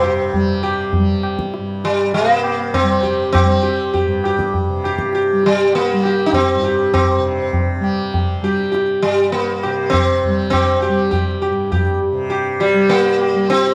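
Hindustani classical music at 100 BPM in 3/4, longing and introspective, set in a dark, moderately reverberant studio room. Up front, the sitar carries the melody between G3 and G4 with a round, buzzing, plectrum-plucked tone, sympathetic strings and a plate reverb, over a bright, softly plucked tanpura drone that shimmers beneath it. High-tuned, ringing tabla joins at 0.3 s in this excerpt cut from a longer piece.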